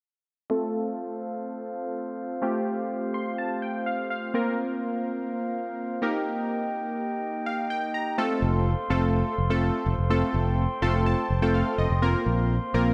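Euphoric and upbeat, this 125 BPM pop excerpt opens on round, detuned sawtooth analog keys with chorus and a filter sweep running to 8.2 seconds, adding short fills over an F, Bbsus2 and Eb progression. From the same moment, a glassy, ethereal glass harmonica holds slow-attack chords alongside them. A punchy, up-front fingered electric bass enters at 8.4 seconds, all set in a light, small-room reverb.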